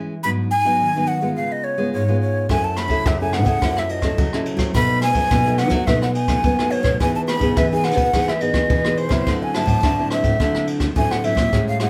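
A straight 4/4 samba-and-choro groove at 106 BPM drives this festive, lively excerpt: a full-bodied, fingerpicked nylon-string guitar opens the accompaniment, a breathy jazz flute with vibrato and a soft attack carries the melody up front from 0.2 seconds, and at 2.5 seconds a second fingerpicked nylon-string guitar with fresh strings and audible finger squeak takes the bass line while a distant, roomy brush kit adds hi-hat, boomy kick, dark ride cymbal and rim clicks, the band playing live together in a small, reverberant room over chords moving from G#m7 through F#m7 and B7 to Emaj7 and D9.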